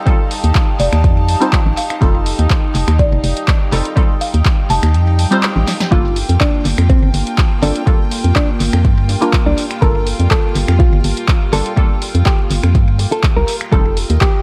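Late-night and deep, this deep house excerpt moves at 123 BPM in G minor with a light swing, its chords resting on F9 before shifting to Gm9 at 5.9 seconds. A moody, detuned ambient pad hangs in the background with chorus and gritty 12-bit sampler texture, joined by a rich, floating studio string section and muted, phased dub chord stabs trailing dub echo, all breathing with sidechain pumping. Up front, an overdriven, layered electronic kick drives the groove alongside a hollow, organ-like FM bass, while a punchy analog drum machine adds finger snaps, handclaps, hi-hat and snare through tape echo. A woody marimba with soft mallets carries the first melody. Then, while the kick drops out, a very quiet electronic swell and a drum fill lead into 5.9 seconds, when a clean, dark hollow-body jazz guitar takes over the melody through analog delay. Light digital ambience, vinyl crackle and an echo-heavy mix give the whole excerpt a dusky, after-hours haze.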